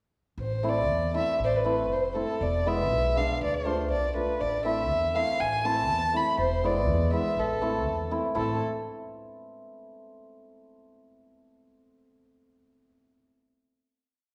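A dark, intimate violin and a woody pizzicato upright bass open this short klezmer piece together at 0.4 seconds, joined a moment later by a shimmering hammered dulcimer at 0.6 seconds. The mood is festive yet soulful, moving at 121 BPM in a straight 2/4 in A harmonic minor. The bowed violin carries a modal melody with ornaments, played sul tasto with a soft attack and light vibrato, sitting close and up front with a smooth top. Beneath it, the bass gives root and fifth on the main beats, while the ringing dulcimer adds off-beat triad chords over a progression that moves from Am through E and Dm and back to Am. The trio sounds up front within a wet recital hall reverb, the space of a church or concert hall, and the piece closes on a final chord ringing out to 9.4 seconds.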